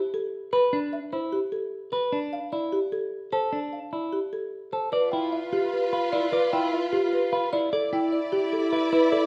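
A moderate, large studio reverb surrounds this hypnotic, meditative piece of minimalist classical pattern music, cut from a longer work and pulsing in 7/8 at 300 eighth-note beats per minute. A woody, mellow folk marimba played with soft mallets carries the up-front melody from the start, joined at 0.5 seconds by twangy, fingered arpeggios on a clean electric guitar. At 4.9 seconds a French horn with light vibrato adds a smooth second line in the background, while a distant, expressive string section enters with bowed, sustained chords that glide with portamento over a G7 and then an Em7.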